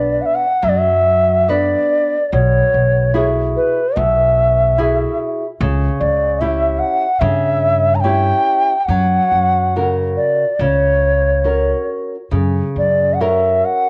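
Fado-style ballad at 72 BPM in 4/4, played with a rubato, uneven pulse and a passionate, mournful mood in this short excerpt cut from a longer piece. An airy bass bansuri carries the melody up front with vibrato and a crisp attack over a small, fingerpicked nylon-string guitar, both colored by cassette tape and plate reverb, while a woody, thumpy pizzicato upright bass on gut strings sits up front underneath until 13.6 s. The harmony moves from Bm through Eadd9/B and C#dim to F#, captured as a home cassette recording in a moderate studio room.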